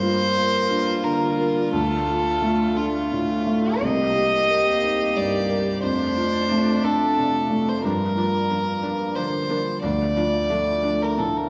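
Neoclassical piano and strings in G minor, reflective and fragile, drift at 89 BPM in a rubato 3/4 as a pure, floating solo violin sings the melody over a felt-muted upright piano with audible action noise, a sul tasto cello second line, a close, airy viola and a very quiet swirling, phased analog pad, all cut from a longer piece and bathed in the wet reverb of a recital hall.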